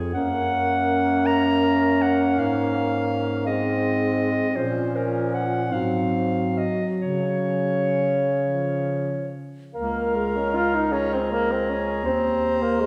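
This classical piece for a quartet of single reeds is tender and lyrical, moving in a gently lilting compound metre with a flexible, rubato pulse, in a short passage cut from a longer work. An alto saxophone sings a second line from the very first moment, and the clarinet enters just after it, carrying the melody above with a clear, up-front tone. A mellow tenor saxophone fills in the accompaniment with vibrato and a soft attack, sounding more distant and roomy than its partners, while a bass clarinet anchors the bottom with a vintage, close-at-hand warmth. The harmony drifts from Gb through Ab and Bbm to Ab7 before settling on Db at 7.0 s, and the opening phrase returns at 9.8 s before closing on a rootless Ab/Eb chord. A generous scoring-stage reverb places the ensemble further back in the room, lending the whole a soft, glowing halo.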